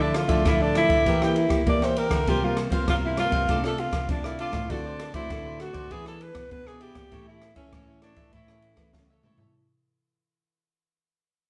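A straight 4/4 samba-and-choro groove at 99 BPM carries this sunny, festive clip, cut from a longer piece and fading out throughout: a breathy, intimate alto saxophone leads with a soft-attack subtone melody and light vibrato until 8.9 s, over crisp picked cavaquinho, a fingerpicked classical nylon-string guitar accompaniment, a second dark, full-bodied nylon-string guitar on the bass line, and an open jazz drum kit with a boomy kick, high-tuned snare and dark cymbals that closes on a drum fill, all set a little back in a reverberant studio space.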